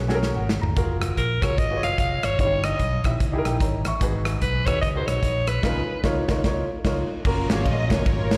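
A swung 4/4 groove drives this short, uptempo gospel passage, opening on a drum fill from a modern studio kit with bright cymbals, a tight kick and a medium-tuned snare sitting up front. A woody, slightly detuned upright piano adds its own fill with a slapback echo, while a round, amped fingered electric bass anchors the low end under chords that move from a suspended dominant through rich sevenths. At 1.2 seconds a raspy, gritty alto saxophone takes the melody, edgy and present with vibrato, carried by slapback and tape echo until 6.0 seconds, and the band punches out accents from 5.6 seconds. Near the close a dark, lush bowed string section enters, distant and colored by tape echo, as the harmony settles on a major seventh chord. The mood is uplifting and reverent, heard as a live gig through the venue's PA with a light recital hall reverb.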